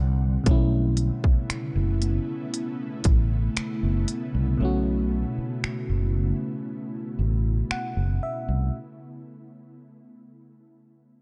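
This dreamy, tender contemporary R&B passage, cut from a longer piece, rests on a B9sus4 chord, with a mellow, warbling FM electric piano, an ethereal, airy pad carrying chorus and reverb, and a round, dark fretless electric bass. A crisp, up-front trap drum kit of finger snaps, hi-hats and a hard-clipped kick enters at 0.5 s. A break follows at 4.6 s, and the electric piano plays a fill from 7.2 s, all in a dry, dark production.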